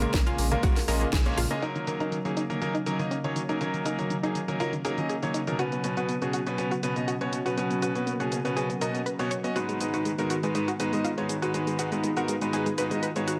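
A bright, up-front grand piano with audible action noise plays stabs through a delay, leading this bittersweet, dreamy progressive house excerpt at 121 BPM, over a detuned sawtooth pluck playing arpeggios and a lush, warbling unison pad holding sustained chords, both pumping with the sidechain and filter-swept from 1.6 seconds. A punchy overdriven kick and a deep, round analog bass drop out by about 1.5 seconds, joined briefly by very quiet soft-handed congas, while a house kit with a cracking snare and filtered hats and shaker carries on alongside a barely audible oversized low-tuned kit. The chords move from Bbm7 to Bsus2 and then Abm7, all set in a moderate lush hall reverb.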